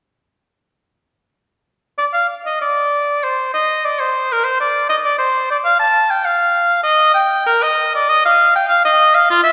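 Classical, baroque-style fantasia for unaccompanied oboe, introspective and solemn, moving at 99 BPM in 3/4 with a free, rubato feel and tuned slightly low at A4 = 437 Hz. The bright oboe plays alone from 2.0 to 9.5 seconds, ranging from F4 to A5 with a soft attack and light vibrato, sitting present and up front. A wet recital hall reverb of 1.9 seconds surrounds it, and the passage is cut from a longer piece.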